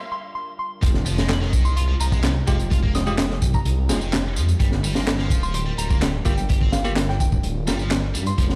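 A crunchy, punchy breakbeat drum kit with a high-tuned snare drives this energetic, swaggering 127 BPM breakbeat cut in F dorian, as a deep, rumbling detuned saw bass and a high-gain, double-tracked distorted guitar riff with tape echo enter at 0.8 s over layered electronic tambourine and handclaps and a very quiet impact, while a soft FM synth bell melody with gritty 12-bit sampler character, bell-like tine electric piano stabs from 2.5 s, and a moody ambient pad sit behind in a bare stone room.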